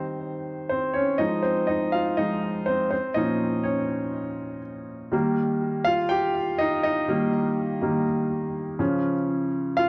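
A straight 4/4 pulse at 122 BPM carries this earnest, dramatic pop fragment, cut from a longer piece and played by a single clear, polished baby grand piano that sits up front, touched with digital delay and ranging from Bb2 to G5. The chords move through Cm/Eb, Fm7 and Bbmadd9 before the second passage arrives at 5.1 seconds on Eb, shifting to Db at 8.8 seconds. A moderate large-studio reverb surrounds the piano, and the whole recording carries the worn, warbly pitch drift of old cassette tape, tuned to A4 = 439 Hz.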